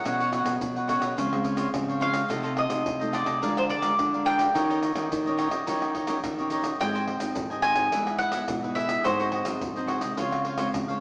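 A straight 4/4 samba-and-choro groove at 107 BPM in Ab major comes from soft-handed maracas, pandeiro and tamborim over a deep surdo, while a second nylon-string guitar fingerpicks the bass line. Up front, a bowl-back mandolin picks a yearning, lively melody in double strings until 9.8 seconds, alongside a crisp cavaquinho and a classical nylon-string guitar whose fingerpicked chords carry a little finger squeak, moving through changes such as Dbmaj7, Eb7 and Abmaj7. The short excerpt sits in a wet studio reverb and sounds heard from further back in the room, with a small-speaker tone.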